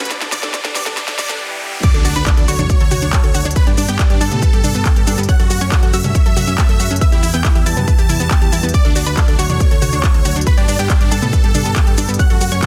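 Uplifting trance at 139 BPM in D major, this soaring, euphoric passage is cut from a longer piece and opens on a short build-up where a drum fill, a riser and a swell drive into the drop at 1.8 seconds, marked by a background impact. A huge, detuned supersaw lead carries the melody from the start, bright and full-bodied with phaser and tape echo, while a lush, thick unison pad holds sustained chords behind it and a round analog pluck spins chorused arpeggios. At the drop a warbling, vintage-tinged unison pluck adds a second line high above, and a punchy, dark FM bass enters at 1.9 seconds. The heavy electronic kick sits up front, joined by a techno kit of cracking snare, smooth hats, handclaps, shaker, toms and crash, with sidechain pumping breathing through the synths, bass and kit percussion. The chords move through Em, D, G and F#m under a dense, heavily limited modern master with light reverb.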